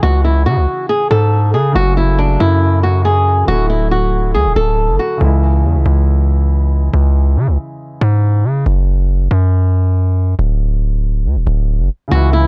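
A dry, dark mix opens this menacing drill excerpt at 139 BPM in a half-time feel in C# phrygian, moving through C#m, F#m and Dadd9. A fresh-stringed, fingerpicked flamenco guitar carries the melody up front, softened by a low-pass filter, while a mellow baby grand piano with long sustain plays filtered accompaniment underneath. A saturated, aggressive 808-style bass with a noise layer and fast attack drives throughout, playing alone once the piano stops at 8.7 seconds, before guitar and piano return briefly at 12.1 seconds.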